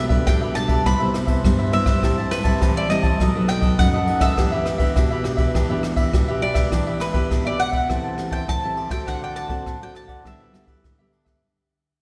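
Up front sits a jazz brush drum kit, its boomy kick, dark cymbals and rim clicks played with brushes and given an airy, polished sound, carrying a lively samba and choro groove at 102 BPM in straight 4/4. A warm, full-bodied nylon-string guitar, fingerpicked with a deep classical tone, shares the foreground, while a crisp, bright cavaquinho fills in the accompaniment above it. The mandolin carries the melody, its double strings picked with a woody character that gives the yearning E minor tune its voice. The harmony moves through chords such as Em7/B, Cmaj7, Am7 and B7 before passing to D7 and G6/D. A long concert hall reverb surrounds the ensemble, and the passage, cut from a longer piece, fades out from 6.7 seconds through to its end at 11.4 seconds.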